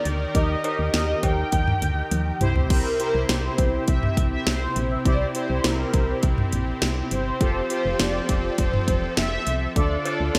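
A bright 1980s-style digital production bathed in moderate plate reverb carries this melancholic yet driving synth-pop excerpt at 102 BPM, where a punchy, up-front house drum kit with cracking snare, cowbell and toms hits a fill at 2.1 seconds over a round, dark FM bass, while a mellow, evolving synth brass melody with phaser and delay floats above a warbling, vintage brassy pad and fat, detuned analog synth brass accompaniment, all moving through Eb, C, Fadd9 and Dm.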